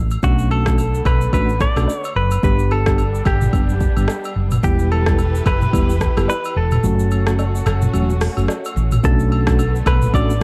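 A dark, dry production frames this sultry, hypnotic afrobeats cut from a longer piece in B minor at 109 BPM with a swung 16th feel, where a round, hollow-body fretless bass sits up front under a deep-kicked, crisp-hatted afro-pop drum kit with rim click, shaker and toms, agogo bells and woodblock tucked low, a twangy, picked direct-recorded clean guitar melody with subtle chorus, a mellow tine electric piano, and lush bowed strings sustaining chords through Bm7, G, Em and F#m, the kick dropping out from 6.8 to 9.0 seconds before returning on Bm7.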